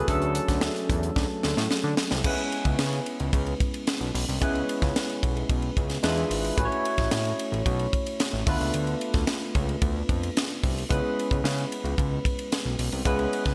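A big, glossy arena sound washed in lush hall reverb frames this breezy 1980s jazz-funk pop excerpt at 111 BPM, where a barky, lightly overdriven tine electric piano with chorus and slapback echo sits up front over a fat, detuned sawtooth analog bass with filter sweeps and a dry, tight funk drum kit with a high-tuned snare, opening on Dmaj7 and then, after a drum fill at 1.2 seconds, moving through C#m7, E7b9, A6 and Dm6 before returning to C#m7.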